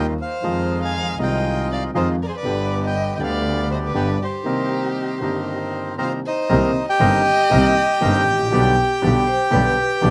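Dramatic and sultry, this tango excerpt in C minor moves at 119 BPM in 4/4 with a rubato feel. A reedy, dark bandoneon carries the melody, close-miked and up front with a slapback echo, while a second, reedy and warm bandoneon adds stabs beneath it. A close, bowed violin plays an expressive second line with vibrato and portamento until 8.5 seconds, and a grand piano supplies the accompaniment over a distant bowed double bass that also sings with vibrato and gliding portamento. At 7.5 seconds a bright, ringing vibraphone with medium hard mallets and a fast motor vibrato enters in the background on a second line of its own. The harmony passes through Fm7, G and Cm7 before settling on G/B, and the dry outdoor sound has little reverb.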